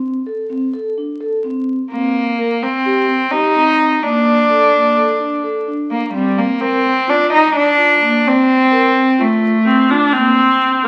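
A clear, nasal cello carries the melody up front from 1.9 seconds, bowed sul tasto with a soft attack and a pure, floating tone, over metallic, ringing vibraphone arpeggios played with soft mallets and a slow motor vibrato. This hypnotic, urgent contemporary chamber piece moves in 9/8 at 255 BPM counted in eighths, passing through Cm, Bbmaj7 and Gmadd11 toward F, and a warm, expressive viola with vibrato and portamento joins at 9.7 seconds as a second line. The sound carries the crackle of a very old 78 rpm record and a moderate recital hall reverb, and the excerpt is cut from a longer piece.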